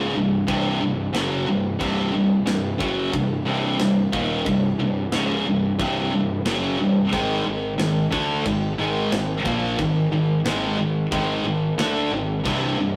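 Heavy metal with a dark, heavy mood, this short cut from a longer piece is driven by an up-front, high-gain guitar riff that sits in a low-to-middle range and cuts through with a bright, distorted edge. Beneath it, a fuzz-laden picked electric bass adds a growly, overdriven low end. A tight metal drum kit enters at 0.5 seconds, with a tight kick, a medium-tuned snare and glittering crash cymbals, heard mid-forward in a big room. At 7.1 seconds a second, overdriven electric guitar joins in the background with its own riff, as the harmony moves from C minor to an Ab power chord and lands on a C power chord near the close. A wet stone room reverb and a rough rehearsal-room sound lend the whole recording a warm, saturated character.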